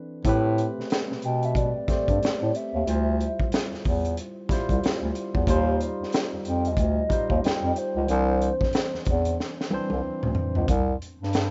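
Smooth and soulful, this short neo-soul R&B excerpt moves at 92 BPM with a swung sixteenth-note feel, as a barky, bright tine electric piano through a combo amp lays down chords from Am9 through Dm11, Eb69 and Cadd9. A crunchy, saturated breakbeat kit sits up front with a punchy kick and high-tuned snare, alongside a breathy bass clarinet carrying the low end with jazz-style vibrato, while from 1.2 seconds a hollow, woody synth lead with chorus sings the melody until 10.0 seconds. The dry, rough home-demo mix has a rolled-off top, with nothing above 7.7 kHz, and a drum fill arrives at 9.4 seconds.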